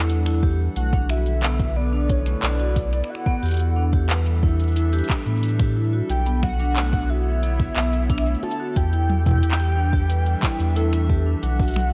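This eerie, intricate IDM fragment in B minor, cut from a longer piece, opens at once with a warbling, nostalgic lead, a lo-fi tape-like pad, vibraphone arpeggios and a deep sub bass, moving at 90 BPM in a straight 4/4. The lead carries the melody with a mellow, detuned tone, vibrato, analog chorus and tape echo, while the pad holds wave-folded, ring-modulated chords with chorus, built-in reverb and sidechain pumping. The vibraphone, struck with medium hard mallets and its motor off, rings through tape echo, and the round sine sub bass sits up front with tube saturation. A booming, dry analog drum machine joins at 0.1 seconds with finger snaps, handclaps, metallic hats, shaker and toms, and a soft, tape-toned electronic kick enters at 0.4 seconds. The harmony moves between Em and Bm chords, all within a dark, warm production with light reverb.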